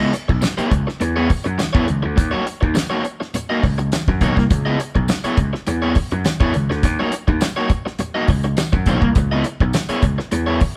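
Funk groove at 103 BPM in C# dorian, sly and funky, cut from a longer piece and played live in one room with light reverb. A growly, punchy slap bass with overdrive and a crunchy, picked electric guitar sit up front alongside a damped 70s acoustic kit with a fat snare and tight kick, while very quiet low-tuned congas struck with hard hands and a jingly tambourine enter at 0.4 seconds. The harmony sways between C#m7 and D#m7 throughout.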